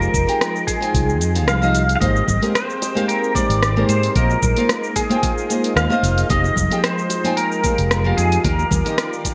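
A clean, compressed pedal steel guitar sits up front and carries the melody, played with fingerpicks and slide, with volume swells, an ensemble chorus and delay. This wistful sunset chillout piece moves at 112 BPM in 4/4 with a light swing on the sixteenths, in F dorian, cycling through Fm7, Abmaj9, Bb9sus4 and back to Fm7 before landing on Ebmaj9. A small, fingerpicked nylon-string guitar plays the accompaniment beneath a lush, thick, warbling pad of detuned sawtooth and square waves that swells in slowly and hangs in the background with chorus. A dark, round and punchy fretless electric bass anchors the low end alongside a smooth R&B kit of hi-hat, rim click and shaker with tape-warm hats and gated reverb, plus a knocking electronic kick. Bright, hard-handed congas and bongos join in the background at 2.0 s. The bright 1980s-style digital production wraps the excerpt in a moderate hall ambience that lasts about 1.9 seconds.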